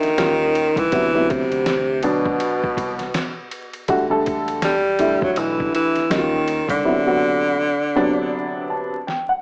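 A breathy, vibrato-laden tenor saxophone with scooped notes and tape echo carries the melody up front over a woody, slightly detuned upright piano and a muffled, pitched-down sampler-style drum kit with a thumpy kick, while a dark, round fingered electric bass sits in the background until 6.8 s, when the drums also drop out; the piano then plays a fill from 8.3 s beneath the saxophone in this mellow, cool jazz-hop excerpt, coloured by warbling cassette tape, vinyl crackle and a small-speaker sound.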